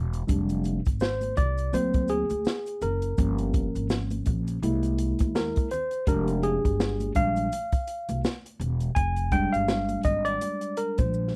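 Jazz-hop with a smoky, mellow swing, this dry, close 1970s-style studio cut opens on a break before a worn, slightly out-of-tune tine electric piano takes a solo from 0.3 seconds over a woody, growly pizzicato upright bass, an open jazz kit with a boomy kick and medium-tuned snare, and ringing maracas and congas tucked in the background, ending on a drum fill at 11.1 seconds.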